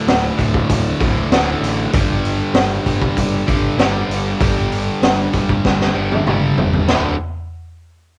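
Two bright, picked guitars open this driving, menacing hard rock cut at 97 BPM: a crunchy overdriven one up front and a tight distorted one in the background, both playing a low riff over D5 and G5 power chords with a cassette-tape grit. A growling, overdriven electric bass and a raw garage drum kit join at 0.1 seconds, the small-room drums sitting up front with a high-tuned snare, boomy kick, splash cymbal and a rolled-off, saturated top. A drum fill runs from 5.6 to 6.9 seconds before the harmony lands back on D5, giving this home-recorded cassette passage, with its light reverb, a rough, close feel.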